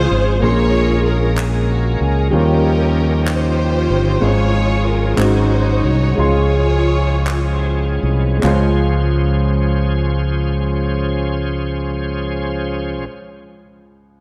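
An up-front, amped fingered electric bass anchors this reverent yet jubilant slow gospel piece in 6/8 and Db major, moving at 48-63 BPM and slowing between 4.2 and 8.4 seconds as the harmony passes from Bbm9 and Eb9 to Db/Ab, Ab7sus4 and Dbmaj7. A bowed studio string section carries an expressive melody with vibrato, portamento and tape echo until 7.6 seconds. A shouting, lightly overdriven tonewheel organ with key click, slow rotary speaker and chorus vibrato holds sustained chords, while a woody upright piano sits in the background, crisp group handclaps join at 1.4 seconds, and moderate concert hall reverb surrounds the ensemble before the piano closes at 14.2 seconds.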